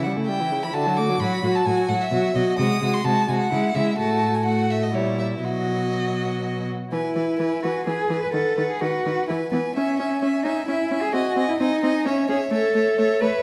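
Graceful and spirited, this quick classical-period movement for string quartet moves at 129 BPM in 3/4 with a straight feel, centred on E major and tuned slightly below standard pitch. The first violin carries the melody high above the ensemble with a focused, clear tone and vibrato, while the second violin plays a smooth, even second line beneath it. The viola supplies close, even accompaniment, and the cello anchors the bass with a rich, up-front sound and a smooth top, sitting as the loudest of the four bowed voices. All four play throughout, passing from a first section into a second at 6.9 seconds, where the harmony settles onto E before turning toward C-sharp minor and closing on A. A wet recital hall reverb and dark production surround the players, and the passage is cut from a longer piece.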